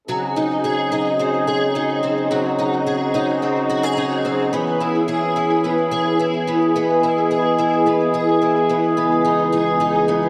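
A picked twelve-string acoustic guitar and a mellow brass ensemble enter together at 0.1 seconds, opening this hazy, melancholic dream pop excerpt at 108 BPM in a straight 4/4. The guitar plays shimmering, octave-doubled arpeggios, given a gentle sheen by ensemble chorus and delay. Alongside it, the brass section holds sustained chords in a loose, classical style, its soft attack and distant, roomy tone sharing the front of the mix with the guitar's sparkle. The harmony moves from G#7 over C# to C#m7 at 4.5 seconds, then to Emaj7 over C# at 9.0 seconds, keeping a steady C# underneath. A long plate reverb soaks the mix, giving the whole passage a dreamy, suspended feel until this short section taken from a longer piece ends at 10.3 seconds.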